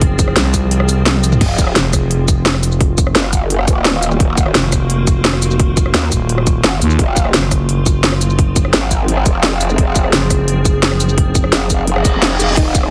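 Growling, saturated bass wobbles up front from 1.4 s over a thick FM bass line, a tight kick and a cracking snare with crisp hats in this futuristic, dark technical drum and bass piece at 172 BPM in Eb dorian, where a swarming, granular drone holds sustained chords beneath, the kick drops out briefly while a drum fill plays, a reverse cymbal enters at 12.0 s, and a soft, round pluck with dub echo sounds in the background at 12.6 s, all through a heavily compressed radio-like sound.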